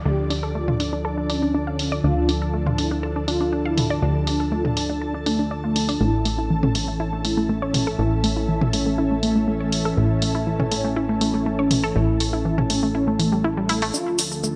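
Cinematic and hypnotic, this melodic techno excerpt at 121 BPM in D harmonic minor sets a mellow, brassy synth melody with chorus and digital delay over a detuned unison pluck arpeggio, a punchy, saturated analog bass, a thick, warbling pad of sustained chords, an ethereal airy pad, up-front deep house drums with filtered hi-hat, shaker and toms, and a very quiet downlifter and riser, all moving from Dm to A in a lush hall.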